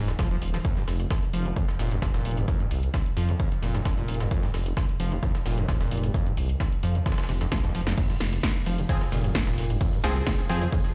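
A squelchy, resonant acid bass riff with distortion and digital delay opens this cut from a longer driving peak-time techno track at 131 BPM in F minor, over a deep, rumbling detuned saw bass, both pumping against a punchy analog kick that sits up front. An overdriven techno kit supplies crash, ride, hats and snare, while a compressed, pitched-up breakbeat sampler kit adds gritty hats and snare in the background, and a drum fill at 7.5 seconds leads into the drop at 8.0 seconds on an Fm chord. A punchy unison supersaw stab with a filter sweep and delay enters at 8.9 seconds, keeping the industrial, relentless mood charging through a bare, reverberant room.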